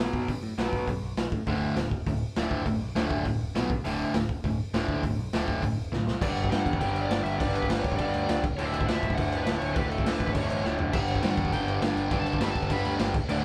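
Punk rock at a rowdy, energetic 203 BPM, cut from a longer piece, where a bright, up-front overdriven semi-hollow guitar riff and a gritty, punchy garage drum kit with a pumping small-room sound drive over a growling overdriven bass in the background, a sludgy distorted guitar adds a second riff from 1.5 seconds, and after a drum fill a smooth overdriven lead guitar melody enters at 6.2 seconds, the band playing live in one room with light reverb.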